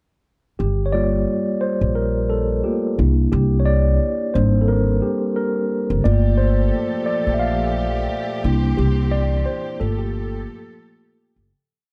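Hazy and melancholic, this short hip hop piece at 88 BPM in G dorian sets a mellow, cassette-tinged tine electric piano of rootless held chords, looped like a sample, over a woody, thumpy upright bass with a sparse line and chromatic approach notes, while a soft-attack bowed string section with vibrato and a smooth top joins as a sustained pad at 6.0 seconds before the fade-out begins at 8.8 seconds, all within a dark production and light reverb.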